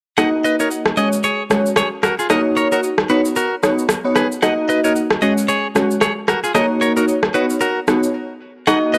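From 0.2 s, glassy, chorused digital keys, a bright, twangy clean electric guitar riff with tape echo, and a tape-warm electronic shaker and rim click open this hypnotic, sultry afrobeats excerpt at 113 BPM with a swung sixteenth feel, cycling Ebm, Dbsus4, Gb6 and Badd9 through a gritty cassette sound with light reverb before a brief break at 8.1 s and a quick touch of agogo bells at 8.7 s.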